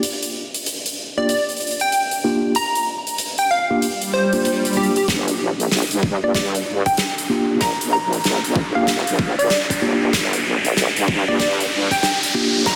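A dense, heavily limited modern mix sits in a moderate plate reverb, giving this playful, funky glitch hop fragment in G minor a polished sheen at 95 BPM, with a strong 16th-note swing. It opens on a huge arena drum kit, its up-front hi-hat and medium-tuned snare carrying a roomy acoustic character, before a punchy, catchy plucky unison lead built from detuned square and sine layers with a sub octave and a noise layer arrives at 1.2 seconds alongside a mellow tine electric piano playing clean stabs that pump under sidechain and trail into digital delay. An electronic swell rises into the second section at 5.1 seconds, where an overdriven, knocking electronic kick and a heavy, wobbling sawtooth bass with chorus join a drum fill and a build-up. Filter sweeps move through both the electric piano and the lead across this stretch, and a riser enters at 7.1 seconds to push the tension toward the cut. 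The passage opens on a Gm7 chord.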